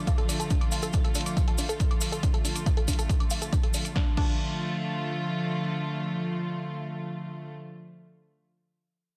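Bittersweet yet euphoric, this short uplifting trance excerpt in a straight 4/4 rests on a Dm chord, with an up-front studio string section holding soft, floating bowed chords from the start to 7.5 seconds, pumped by sidechain. A round, nasal, detuned sawtooth pluck runs arpeggios through chorus, phaser, cassette tape colour and tape echo alongside a punchy, forward electronic kick, an analog drum machine's crash, hi-hat and snare, and a grainy, bright cabasa, all of which fall away by 4.3 seconds to leave the strings alone. Light reverb surrounds a dense, heavily limited modern master.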